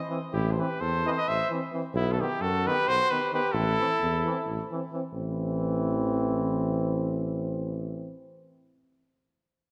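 An up-front cornet with light vibrato carries the melody in this bittersweet, virtuosic Balkan folk brass excerpt. It is a fast 7/8 at 263 BPM in A dorian sharp4, moving from Am to B and back, with a mellow trumpet as second line until both stop at 4.7 seconds. Beneath them an up-front tuba holds the bass while a brilliant trombone and a distant, roomy euphonium accompany, all played in a classical style within a wet scoring-stage reverb.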